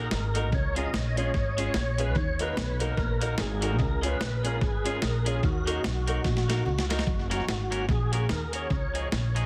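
Ska at 147 BPM in F# major, upbeat and joyful, with a swung eighth-note feel, cut from a longer piece. A lightly overdriven tonewheel organ carries the melody through a slow rotary speaker, chorus vibrato and tape echo, while a bright, twangy clean electric guitar adds picked accompaniment with its own echo. A woody, gut-strung upright bass sits up front with pizzicato thump, joined by a gritty, pitched-down boom bap sampler-style kit with a thumpy kick and high-tuned snare, also up front. A dark, boxy upright piano drops stabs from the background until about 7.0 seconds, and a very quiet, fingered electric guitar plays a low, mellow riff. The harmony moves between D#m and C# before a drum fill from 6.3 to 7.1 seconds opens onto F# and C#add9. The whole mix has a light reverb and a heavily compressed, radio-like sound.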